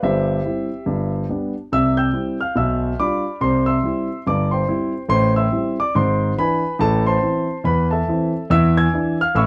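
A dark, mellow concert grand with audible action noise and deep bass plays alone, up front and intimate, in this short, playful and exuberant stride-piano jazz fragment at 142 BPM with swung eighths in C major, moving from C and G harmonies into A minor and E7 colours around 5.1 seconds, all set in a moderate club reverb.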